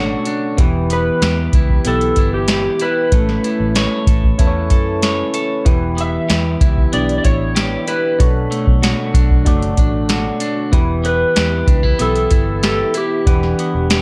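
Indie bedroom pop with a lonely, hazy mood, where a twangy, slightly broken-up electric guitar with warbly pitch drift and mellow electric-piano-like synth keys colored by cassette tape sit over a round, foam-muted fingered bass, an overdriven vintage rhythm box with a deep kick and metallic hats sits up front from 0.3 seconds, and an electric slide guitar played with fingerpicks carries the melody through slapback echo from 0.9 seconds, in a lightly reverberant room.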